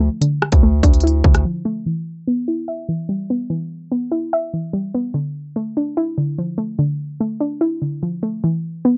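Ominous and tense, this drill excerpt sits at 146 BPM in a half-time 4/4 feel in E phrygian, opening with a soft, round synth pluck with chorus and a dark, filtered tone over a saturated, distorted 808-style bass and a drill kit of hard-clipped kick, crisp hats and rim click carrying vintage 12-bit sampler grit. Bass and drums drop out at 1.4 seconds for a short break, and from 1.9 seconds the pluck plays alone under a filter sweep, moving from Em to Dmadd9 before landing on E5 at 8.4 seconds. The mix is dim and lightly reverberant, with the drums and bass pushed up front.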